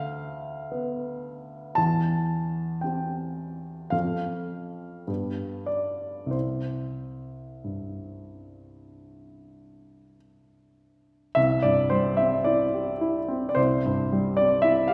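A warm, present baby grand piano plays alone up front, its notes carrying a short sustain as it moves through a tender, nostalgic romantic nocturne in a gently slow, rubato 4/4, spanning the low register to the treble. The harmony drifts from Bdim/D through C/E, F and G7 before settling on C5 at 6.3 seconds and resolving to C at 11.4 seconds, where the opening section begins again. A wet recital-hall reverb gives the piano the airy bloom of a church or concert hall, and the passage is cut from a longer piece.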